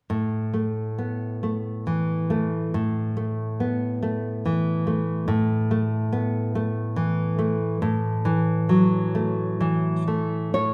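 A fingerpicked nylon-string guitar with fresh strings plays this sunny, warm romantic solo in 3/4 with a rubato feel around 62-72 BPM, opening on an A5 chord and spanning A2 to C#5, tuned to A4 = 438 Hz, with a deep classical tone, audible finger squeak, an up-front placement in light reverb, and playing from 0.1 to 10.7 seconds in an excerpt cut from a longer piece.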